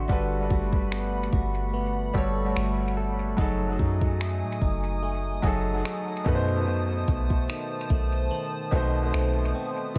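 Moody and longing, this contemporary R&B excerpt moves at a slow 73 BPM with a light swing, cycling through Gmaj9, F#m69 and B7b9. A clear, up-front baby grand piano carries the accompaniment with dub echo, while a direct-recorded clean electric guitar plays bright, twangy arpeggios through phaser and its own dub echo, over a hollow, flute-like pad that sustains chords with chorus and sidechain pumping. A deep, round 808-style bass sits forward, and a smooth electronic drum kit of finger snaps, hi-hat and soft kick enters at 0.1 s, all set in light digital ambience within an echo-heavy mix whose top end is rolled off.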